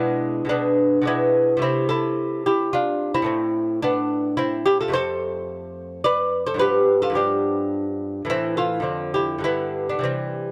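Flowing and serene, this brief excerpt of a baroque-style dance in triple metre unfolds for solo lute with a gently rubato feel. The fingerpicked lute plays alone from 0.0 to 10.5 seconds, its nylon double courses, some doubled at the octave, giving a delicate, warm tone that sits up front in a dark production. The harmony moves from E7 over B through A minor and F to G7, settling back on A minor before passing through Dm7 over F and G near the end. A moderate spring reverb with a 2.4-second decay lends the instrument a soft halo, and the tuning sits slightly above standard pitch at A4 = 443 Hz. The result is an intimate, unhurried glimpse of a longer piece.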